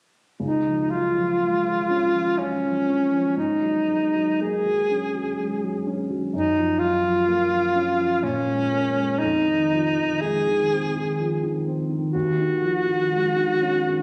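A bright alto saxophone carries the melody in a classical style with vibrato and a smooth top, sitting up front over a dark, mellow baby grand piano that offers vintage-toned accompaniment from 0.4 to 14.0 seconds. This dreamy, luminous impressionist duo moves at 61 BPM in 3/4 with uneven, rubato beats in Db major, drifting through lush chords such as Ab11, Gbmaj7 and Ebm11. Cut from a longer piece, it has the feel of a phone recording made in a recital hall with moderate reverb, plus a club-like reverb and compression.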